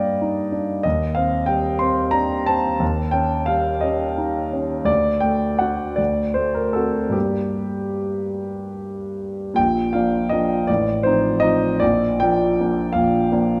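A single grand piano sits up front and present in a moderate scoring-stage reverb, its long sustain blooming into the room with a decay of about 2.2 seconds. This is a romantic classical character piece in 6/8, taken from a longer work, moving at a slow, flexible pulse of roughly 48 to 64 dotted-quarter beats per minute with generous rubato. The mood is bittersweet and passionate, opening in G minor and passing through Cm/Eb, Eb7 and a dominant D7 before settling back on G minor. At 9.6 seconds the music turns to B flat major, where the harmony moves from Bb to F7/A and back to Bb. The warm tone spans a broad register from A1 up to C6, and the fragment closes at 13.6 seconds.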